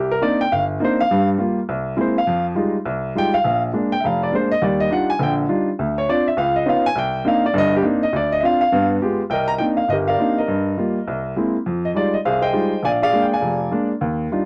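A brisk swing at 205 BPM in 4/4, with the eighth notes lightly swung, drives this short jazz piece in C minor, cut from a longer performance. A lone upright piano carries the whole recording, its woody, natural tone placed up front and spanning from F1 up to Bb5. The mood is swinging and late-night, and the harmony moves through rich minor-ninth and dominant colours, opening on Cm9 and passing through Fm9, Bb7 and Ebmaj9 before a G7b9 turns the music back toward C minor. At 9.3 seconds a new section begins on Cm9 again, heading through Ebadd9/G and Caug7 toward Fm9 and Bb7 before the clip ends at 14.5 seconds. The sound is dry and close, with little reverb, in the manner of a 1970s studio recording.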